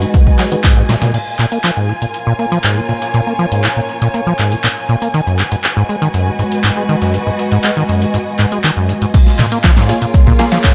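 Trippy and driving, this 120 BPM acid house passage in Bb phrygian, cut from a longer piece, sets a rubbery, resonant sawtooth acid bass with overdrive, delay and sidechain pumping up front over a moody, detuned analog pad that pumps in the background and takes a filter sweep from 1.1 to 9.1 seconds, while a bowed studio string section with vibrato and portamento adds a smooth, expressive texture, a punchy analog drum machine with handclaps, hi-hat, snare, toms and crash drives the beat alongside a grainy tube shaker and a very quiet, gritty sampler-style soul kit, and the muted, phaser-treated dub chord stabs and the punchy electronic kick open the piece, the kick returning with the drop at 9.1 seconds and the stabs following at 9.9 seconds, all over Abm7 and Bbm7 chords in light digital ambience.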